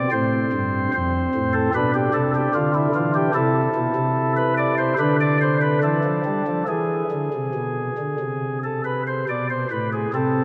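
A dark, grave classical chorale-style fragment for solo pipe organ, cut from a longer piece, moving with a rubato feel in 4/4 at roughly 69-76 BPM as soft, up-front flute stops with chiff and baroque voicing span F2 to D5 through chords from F to Am11/B, Am, Dm13 and finally E at 6.7 seconds, all bathed in a long, wet cathedral reverb.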